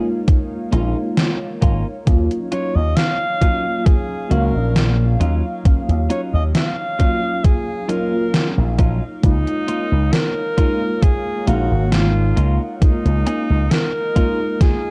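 Vaporwave with a faded, dreamy mood, moving at a slow 67 BPM in 4/4 with a light swing on the sixteenths, this excerpt from a longer piece sits in Db major and drifts from Db69 to Ebm9 and back to Db69 at 9.2 seconds. A mellow FM electric piano with a soft, round tone and a noise layer plays the accompaniment through ensemble chorus, cassette tape and tape echo, while a warbling, detuned pad holds sustained chords in the background with chorus, reverb and phaser. A clean, compressed electric guitar plays a picked riff coloured by subtle chorus, 12-bit sampler grit and tape echo. Up front, an overdriven, thumpy electronic kick and a gated 80s drum machine with hi-hat and gated-reverb snare come in at 0.3 seconds, and a bright, punchy slap bass with an envelope filter and tube saturation joins at 0.7 seconds. The clear alto saxophone enters at 2.5 seconds with a classical-style solo melody and light vibrato, trailed by tape echo. 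The production is dark and dry, with a cassette-tape haze that rolls off all the high treble.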